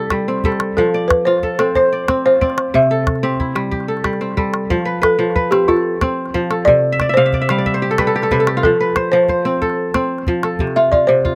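Recorded outdoors with scarcely any reverb or room sound, this joyful fragment of West African string and xylophone music moves at 122 BPM in a straight 12/8, centered in F lydian. A crisp, ringing kora opens with fingerpicked arpeggios through a slapback echo, a small, close and dry calabash adds percussion almost at once, and the woody, round balafon, struck with soft rubber mallets, carries the melody from 0.8 seconds. At 4.7 seconds the balafon takes a dark, smooth solo over chords moving between F and C, while the up-front kora slips in a short fill along the way.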